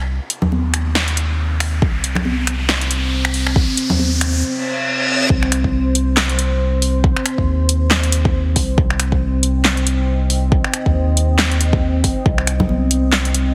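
A soft, round dub sub bass opens this brooding, meditative deep dubstep excerpt in C minor at 138 BPM with a swung half-time feel. Within half a second it is joined by an up-front deep house kit of punchy snare, handclaps, finger snaps and filtered hi-hats, and by bright high-tuned congas with dub echo. A dark, detuned sawtooth ambient pad with chorus enters at 1.4 seconds and is filter-swept through a build-up of electronic riser and reverse cymbal. A deep layered kick comes in at 1.8 seconds and anchors the groove into the drop at 5.3 seconds, all under a heavily compressed radio sound with light reverb.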